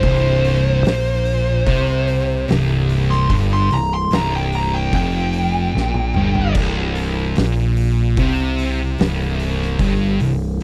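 Stoner and doom metal at a slow 74 BPM in straight 4/4, this brooding, ominous excerpt is cut from a longer piece and opens on a lead guitar solo. The fuzz lead guitar sits up front, compressed and distorted with a slapback echo, carrying the melody from C5 to C6 until 6.5 seconds. Beneath it, two thick fuzz guitars grind out the riff low in the register, one tucked into the background, both playing until 10.5 seconds. A growling picked bass, overdriven and warm, recorded direct and amped, sits up front, while an oversized low-tuned drum kit with a punchy kick, fat snare, dark cymbals, hi-hat and toms rings saturated and gritty in a bright stone room. A drum fill from 5.7 seconds leads into the second section at 6.6 seconds, where the riff carries on under the bass and drums. The dry, close production recalls a 1970s studio, with little reverb.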